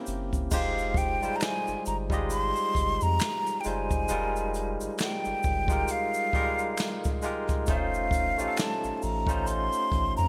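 A lazy 4/4 groove with a light swing on the sixteenths sets the pace for this sultry, introspective neo-soul and R&B excerpt, cut from a longer piece. A barky tine electric piano, lightly overdriven and up front, opens on a C7 at 0.0 seconds before settling into a long Fm9, while a round, deep analog bass with a fast attack and sustained notes sits underneath. A jazz drum kit played with brushes brings dark cymbals, hi-hat, a medium-tuned snare and a boomy kick, its small-room sound shaped by gated reverb, and a tube shaker with finger snaps adds a soft layer of percussion. At 0.5 seconds a breathy, mellow silver concert flute takes the melody in its upper register, close-miked and hollow, with vibrato and tongued notes. The harmony shifts to an F7b13 at 7.7 seconds, and the whole mix carries a bright 1980s-style digital sheen with light studio reverb.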